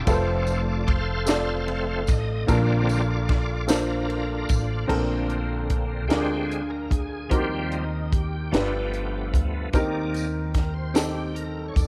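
Jubilant and uplifting, this slow gospel passage in 6/8 at 50 BPM in Bb major sets a shouting, clean tonewheel organ with key click, chorus vibrato and a slow rotary speaker taking the solo over sustained chords, while a dark, worn grand piano with audible action noise, a woody, thumpy pizzicato upright bass on gut strings, a tight, dry funk drum kit with a high-tuned snare and bright cymbals, and a jingly tambourine that drops out at 4.9 seconds and returns at 9.7 seconds fill out a light studio reverb, moving from F through Bbmaj7 and Bbmaj9 to Eb6, G7 and Cm7/Eb.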